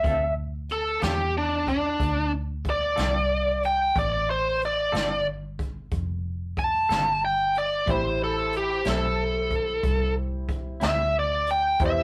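A slow 12/8 blues at 61 BPM, brooding and smoky, this short cut from a longer piece rests on a Dm7 groove that moves to Am7 at 7.9 s, with brushes on a small-room kit's boomy kick, snare and hi-hat and a dark, round, foam-muted fingered electric bass underneath. An up-front, biting overdriven lead guitar carries a picked solo throughout, while a twangy, compressed clean electric guitar with tremolo accompanies it. A woody, slightly detuned upright piano with long sustain joins at 7.9 s, all heard through light reverb in a rough rehearsal-room recording with lossy compression artefacts.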